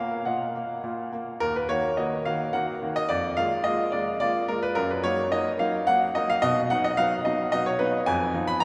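Bathed in a wet cathedral reverb with a 6.2-second decay, this restless, serious fragment of a classical-period piano sonatina in 3/4 places a solo baby grand piano up front, its natural tone and short sustain carrying a brief opening passage into a longer second section that runs to 8.6 seconds.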